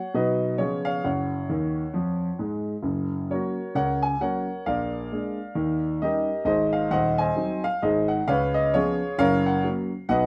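A moderate studio reverb surrounds an up-front, boxy concert grand with deep bass and long sustain, in this short, swinging and exuberant stride piano passage cut from a longer jazz piece. The solo piano plays in F# major at 132 BPM in 4/4 with a light swing on the eighth notes, ranging from D#1 to G#5 and moving through B, C#7 and F#5 before a fill from 1.5 to 2.8 seconds. A new section then begins at 2.8 seconds and runs through A#7, D#7, G#7 and C#7, resolving to F# before the clip ends at 10.3 seconds.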